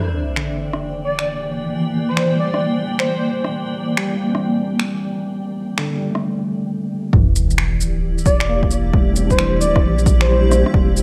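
Nocturnal and wistful, this future garage excerpt moves at 133 BPM in 4/4 with a swung sixteenth-note feel, opening on an Em7b5 chord in a dreamy mix soaked in moderate plate reverb. A cloudy, evolving granular pad holds sustained chords throughout, its blurred, detuned body pumping against the sidechain, while a clean tine electric piano joins at 0.4 s with accompaniment colored by analog delay. Overdriven electronic finger snaps, rim click and shaker keep the groove from the same moment, and an airy, soft lead with chorus, vibrato and tape echo sings its melody in two brief phrases. A background sub drop marks impacts at the start and again at 7.1 s, when the second section arrives with a punchy, layered kick and a deep, round sub bass that pumps beneath the pad. The kick and bass give the closing seconds a heavier footing while the pad's haze and the lead's dark, airy tone keep the late-night atmosphere intact.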